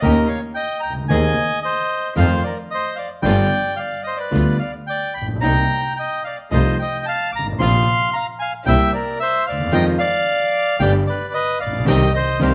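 A moderate recital hall reverb, about 1.4 seconds long, surrounds this tense, passionate tango excerpt in C minor, taken at 112 BPM in 4/4 with a rubato feel. Up front, a reedy, vintage-toned bandoneon carries the melody between Bb4 and D6, its sound slightly band-limited. Beneath it, a concert grand piano supplies intimate accompaniment with deep bass, a smooth tone and audible action noise. A single close, biting double bass plays bowed lines with vibrato and intensity. A con sordino string section adds very quiet, veiled, dark stabs. The harmony moves from Eb7 through F7 and G7 to Cm7, then Fm7 and G before arriving on Cm, where the band hits an accent at 11.9 seconds.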